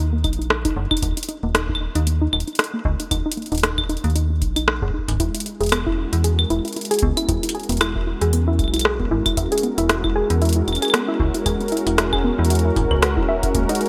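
Intricate and playful, this IDM passage, cut from a longer piece, moves with a lightly swung 4/4 groove. A warbly, dusty pluck spins arpeggios from the first moment, its lo-fi, wave-folded tone carrying chorus, delay and a filter sweep that runs across the whole passage. Beneath it, a metallic FM bass with a fast attack sits up front, while a booming analog drum machine, also up front, ticks out claves, hi-hat and rim clicks with tape-warm, metallic hats, joined by a deep electronic kick from 0.2 seconds. At 5.2 seconds a smooth, detuned sawtooth pad arrives with a slow attack and chorus, laying mellow sustained chords under the pattern as the harmony moves from D#5 to E69. A moderate plate reverb and bright 1980s-style digital production give the whole a glossy sheen.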